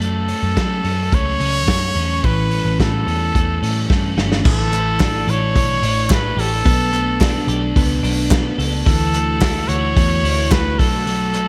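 A clear trumpet with light vibrato carries the melody from the start of this sunny, youthful jangly indie pop piece at 109 BPM, over twangy, compressed twelve-string electric guitar arpeggios, a crunchy overdriven guitar with analog chorus tucked in the background, and a dark, round, foam-muted picked bass. A muffled vintage drum kit with a punchy kick, dark cymbals and gated reverb sits up front, and a drum fill at 3.9 seconds leads into a new section where hollow group handclaps join at 4.7 seconds. The sound is a gleaming 1980s-style digital production with light reverb and small room ambience, moving through chords from F#m to Bm7 in this excerpt of a longer piece.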